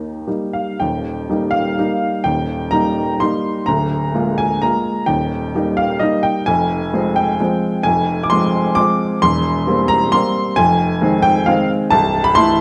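A solo upright piano opens at once in a playful, sparkling classical waltz in Eb major, its 3/4 lilt pushed and pulled with rubato between 106 and 139 BPM. The instrument sits up front with a clear, woody, intimate tone, long sustain and audible action noise, ranging from C1 to D6 as the harmony moves from Eb through Bb7/D and Fm to C7/E and Am/C. A moderate recital hall reverb surrounds this short passage, which is cut from a longer piece and ends at 12.6 seconds.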